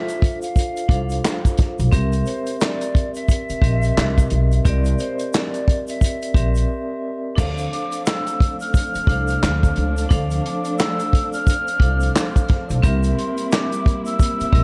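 An airy, hollow silver flute carries the melody from the first moment over a ringing vibraphone struck with hard mallets, its fast motor vibrato giving the chords a metallic shimmer. This reflective, dark boom-bap hip-hop excerpt moves at 88 BPM in D minor with a swung sixteenth-note feel, and the flute's tape echo trails each phrase. A vintage drum kit with a punchy kick, medium-tuned snare, handclaps and dusky cymbals sits up front alongside a woody, thumpy pizzicato upright bass that joins at 0.9 seconds, while a grainy tube shaker lingers in the background. The harmony alternates between Dm7 and C7, and after a brief break at 6.7 seconds a lush, bowed string section enters at 7.4 seconds with smooth, expressive sustained chords. The small room reverb and rolled-off top keep the whole production dark and intimate, as though the fragment were lifted from a longer piece.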